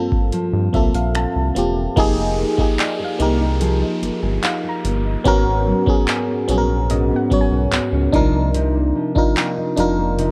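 A glassy, chorused FM electric piano playing a fill and a woody nylon-string guitar arpeggiating through digital delay open this moody, longing contemporary R&B fragment, soon joined by a booming, overdriven analog drum machine with a deep kick, metallic hats, finger snaps and handclaps, and a round, dark analog bass, while from 2.0 s a faint electronic downlifter enters and then a gentle, chorused pluck drifts in the background, the recording wrapped in light reverb and the warbling pitch drift of worn cassette tape.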